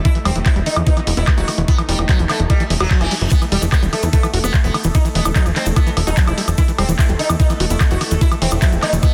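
A knocking electronic kick drum sits up front in a straight pulse, joined by a techno drum kit of handclaps, woodblock and warm hats set in a large room. This psychedelic trance excerpt feels alien and driving. A punchy, funky analog bass plucks low and close, while a squelchy, gritty acid bass riff, overdriven and soaked in tape echo, churns in the background. A buzzing, shimmering sitar carries the melody through phaser and tape echo, over a bubbling texture of randomly stepped filter chords that pump under sidechain compression. A very quiet, juicy blip pluck traces a second line from 0.9 seconds, a reverse cymbal sounds at 2.7 seconds, and a grainy, distant tube shaker enters at 3.3 seconds, all within a dense, heavily limited modern master.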